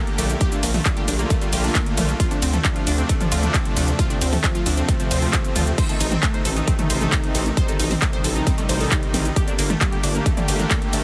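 A punchy, layered electronic kick drives this soaring, euphoric uplifting trance section, sitting up front from 0.4 seconds at 134 BPM in a straight 4/4. Around it, a big-room dance drum kit with metallic hats adds crash and ride cymbals, handclaps, shaker and toms, both drum parts carrying the boxy character of a small room. A gritty, saturated synth bass built from square, saw and sine waves with a resonant, oscillator-synced edge holds down the low end in G minor, pumping with the sidechain. Bright, detuned unison plucks spin arpeggios through a phaser and tape echo with a filter sweep, while a lush, slow-attack supersaw pad sustains chords beneath, both also breathing with the sidechain. The harmony moves from Gmadd9/Bb through Dm7 and Adim before settling on Gmadd9, tuned to A4 = 438 Hz. The whole excerpt is squeezed into a heavily compressed, radio-like sound with a digital ambience.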